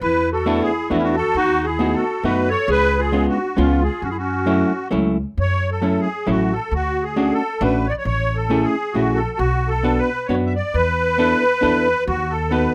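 A swung 3/4 lilt at 134 BPM drives this whirling, nostalgic musette waltz fragment in F# minor, where a reedy, shimmering musette accordion carries the melody up front over a dark, clean hollow-body jazz guitar that enters at 0.5 s and a woody pizzicato upright bass, while a raspy, growling clarinet with scooped notes and light vibrato adds a gritty second line until 4.9 s, heard in a modest small-room reverb with a rough home-demo mix.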